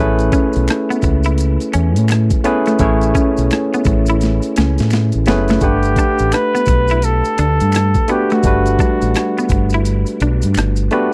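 R&B with a neo-soul lean, this smooth, sensual excerpt moves at 85 BPM in G major with a swung sixteenth feel, built on a bright, barky tine electric piano with light overdrive and a round, dark fingered bass sitting up front over Amaj9 moving to Gmaj9. A gritty, pitched-down boom bap sampler kit with a thumpy kick and high-tuned snare, plus maracas and finger snaps and a clean semi-hollow guitar touched with spring reverb, fill out the groove, and a drum fill runs from 4.2 to 5.6 seconds. At 5.6 seconds a vintage, punchy flugelhorn takes the melody with vibrato until 9.7 seconds, all captured as a dry, close 1970s-style studio recording.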